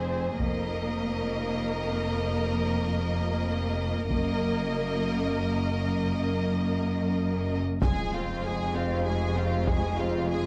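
In a straight triple metre, this heroic, dramatic excerpt from an epic orchestral film score sets lush bowed strings beneath hard-stick taiko drums with a vintage, band-limited sound, the drums entering at 0.4 seconds. Violins carry a vibrato-rich melody with portamento and a smooth top over a focused second violin line, while distant violas with soft attacks, even cellos and expressive double basses fill the accompaniment and bass beneath. At 7.8 seconds a mellow, roomy French horn section adds sustained chords as a huge, dark impact sounds in the background, all in light reverb with close, detailed miking.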